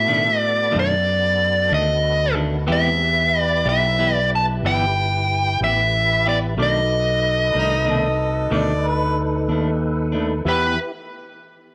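Slow blues in 12/8 at 62 BPM in E minor, this mournful, brooding excerpt moves from a B7#9 chord to Em and back before resolving on Em at 10.5 seconds. A dark, smooth lead guitar carries the melody up front with picked, overdriven tone, while a round fretless electric bass sits close and direct beneath it. A tonewheel organ holds sustained chords with key click, chorus vibrato and a slow rotary speaker, and a clean, picked electric guitar with tremolo adds accompaniment alongside a very quiet tine electric piano heard through its built-in speakers. At 7.6 seconds a mellow harmonica enters with a second line, its soft attack, scooped notes and light vibrato giving it a jazz-style solo voice. A moderate plate reverb with a 2.8-second decay surrounds the ensemble.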